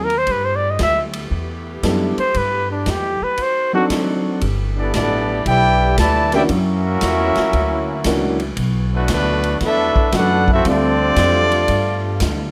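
A mellow solo trumpet opens this joyful, energetic big band swing cut, playing up front with light vibrato, scooped notes and a smooth top before it stops at 3.8 seconds. The tune sits in G major at 116 BPM in 4/4 with a swung eighth-note feel, and this is a short section taken from a longer piece. Under the solo, a concert grand piano with deep bass comps until 11.5 seconds, a woody pizzicato upright bass sits up front, and a very quiet, tight saxophone section holds clear, vibrato-laden chords. A swinging drum kit with a punchy kick, medium-tuned snare, hi-hat and ride cymbal rings in a big, natural room. At 4.8 seconds a warm trumpet section takes over the melody with a smooth ensemble sound, while a bright, loose trombone section plays a second line in the background. The harmony moves through rich chords such as G69, F#7b13 and Dm11 before landing on G7, all heard through the small-room ambience of a rough home demo mix.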